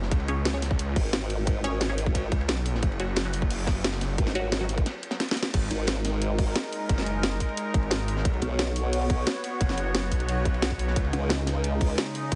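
Dark technical drum and bass at 177 BPM in G# minor, tense and mechanical, heard as a clip from a longer piece. Layered electronic drums sit up front: a tight electronic kick and a drum and bass kit with a cracking snare, hi-hat and crash. Underneath, a crunchy breakbeat kit stays in the background, gritty and saturated with dark cymbals and a rolled-off top. Two basses carry the low end. A thick, lush detuned saw bass has chorus, overdrive and sidechain pumping, and a wobbling formant-sweep bass adds saturated pulse-wave movement from about 1.0 seconds. A muted, wave-folded dub chord stab with phaser and tape echo flickers through the opening until 4.7 seconds; after a short break and drum fill, an evolving, airy resonant pad with sidechain pumping takes over the sustained chords from 5.5 seconds, moving through G#sus2, B5 and C#sus2 over heavily compressed, radio-like sound in a small room.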